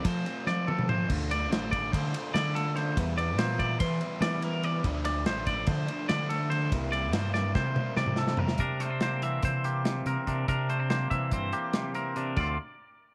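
A bright, compressed electric guitar leads this excerpt from a longer math rock and midwest emo piece, picking twangy arpeggios high in its range through spring reverb. The mood is restless and wistful, running at 287 BPM counted in eighths in a straight 9/8. Beneath it, a double-tracked, overdriven semi-hollow guitar plays a riff in the low-middle register until 8.6 seconds, when a second clean, picked electric guitar takes over the accompaniment for the closing stretch. A growling fingered bass, punchy and driven through overdrive, anchors the low end. Up front, an acoustic kit with a dark, smooth, rolled-off top, a tight kick and a medium-tuned snare uses crash, ride, hi-hat and toms, adding drum fills near the start and just before the change. The harmony moves from F through Dm7, Em7b5 and C7 to C9 before returning to Dm7, all in a small-room ambience.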